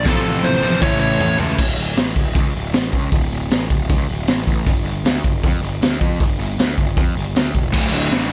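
Raw and aggressive, this punk rock excerpt opens in a burst, with a smooth, dark overdriven lead guitar playing a brief melody through tape echo that stops at 1.4 seconds. Beneath it, two picked electric guitars sit in the background playing riffs: a cranked stack guitar with a bright overdriven edge and a crunchier, warmer overdriven guitar. Both drop out at 1.6 seconds and return at 7.7 seconds. A growly, fuzz-laden picked bass stays up front the whole way, carrying the harmony as it moves from F/A and A into D5, G5 and back to D5. The garage drum kit is loud and close, with a high-tuned snare, a punchy kick, dark cymbals and a gritty, saturated small-room sound that pumps, and it opens with a fill across the first section. The mix is dry and immediate, with little reverb.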